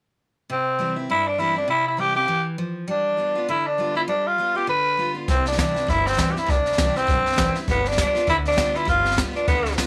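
Rowdy and retro, this rockabilly excerpt swings at 200 BPM in C major, moving between C and G7 as a raspy, growling tenor saxophone with vibrato carries the melody over a bright, picked dreadnought acoustic guitar. At 5.3 seconds a woody pizzicato upright bass with gut strings and a jazz kit played with brushes join in, the kit bringing a boomy kick and a high-tuned snare. The sound has a light touch of studio reverb.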